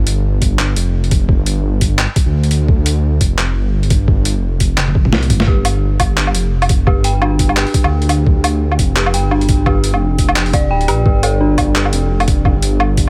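Half-time drum and bass at 172 BPM with a swung, heavy and dark feel, built on an up-front, rumbling detuned saw bass that beats deep in the low register and a gritty, pitched-down sampler-style kit with a high-tuned snare, handclaps, hi-hat, toms and woodblock, overdriven alongside a thumpy electronic kick. After a drum fill at 4.8 seconds, an eerie, inharmonic FM synth bell enters at 5.5 seconds with arpeggios treated with chorus and dub echo. The mix is dry, and the recording is cut from a longer piece.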